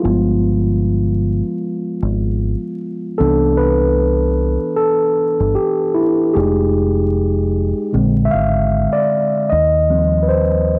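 A relaxed 76 BPM pulse in 4/4 carries a gentle 16th-note swing through this short lo-fi hip hop section, cut from a longer piece and lasting 10.8 seconds. The mood is cosy and nostalgic. A mellow tine electric piano takes the featured solo, spanning D3 to F5 with a clean, up-front tone that is softened by a low-pass filter and the hazy colour of cassette tape. Underneath, a deep dub fingered electric bass plays from F1 to Eb2, its round, dark, amped sound sitting close and direct. The harmony drifts from G7b9 to Cmaj7 at 3.2 seconds, then through Fm7 and Bb7 before settling on Eb69 at 9.5 seconds. A moderate studio reverb gives the pair a little space, while vinyl crackle and the home-recorded cassette character lend the whole a lived-in, intimate feel.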